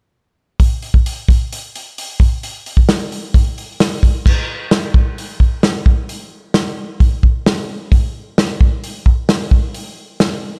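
A dark, lightly reverberant production gives this short rock excerpt a cozy, rounded sound, with a single acoustic drum kit placed up front in a small room. The mood is carefree and upbeat, carried by a straight 4/4 feel at 131 BPM. The loose indie kit enters at 0.6 seconds and plays on until 10.3 seconds, using crash cymbal, hi-hat, kick drum and snare drum. Its snare is medium-tuned, while the tight kick keeps the low end compact. Partway through, at 4.3 seconds, the music moves into a new section, and the drums carry the piece on their own until the clip, cut from a longer piece, comes to a stop.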